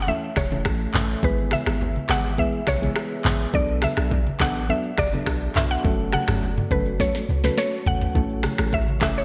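Hypnotic and sultry, this afrobeats excerpt moves over A, E/G#, Bm7 and F#m in a bright 1980s-style digital production bathed in lush hall reverb. A woody, percussive mallet-like synth pluck carries the melody with chorus and digital delay, while soft, round electric-piano-like synth keys and a deep, moody ambient pad with its own built-in reverb sit beneath, over a punchy sine sub bass with a pitch-drop attack. An up-front electronic afro-pop kit with a sharp snare, metallic hats, snaps, claps, shaker and gated reverb drives the groove alongside low-tuned background congas, with a drum fill from 7.0 to 8.2 seconds.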